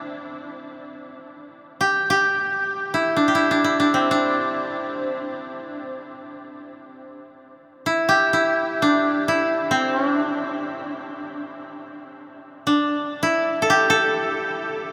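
Calm and austere, this fragment of Japanese traditional chamber music is a solo koto moving in free time through a D suspended pentatonic scale, staying between C4 and A4 for the full 14.9 seconds. The koto, plucked with fingerpicks, sounds bright and woody, its close, dry tone sitting up front. Around it a huge, wet ambient reverb with an 8.2-second decay opens onto a vast, echoing space.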